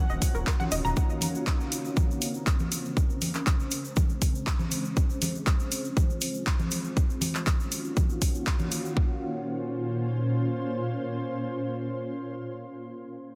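A shimmering, ethereal pad opens this bittersweet progressive house excerpt in Bb minor at 120 BPM, pumping under sidechain and sweeping through a filter over Ebm7, Bbmadd9 and Fm chords, while a tight, detuned sequenced arpeggio with dub echo and a round, deep analog bass sound only briefly at the start. A punchy, tape-warm kick sits up front, joined by an overdriven pop kit of handclaps and hi-hat, a grainy egg shaker and distant bongos and congas in the background. The percussion falls away around 9.0 s, leaving the dark, granular pad to carry on alone until 12.6 s under a dense, heavily limited master.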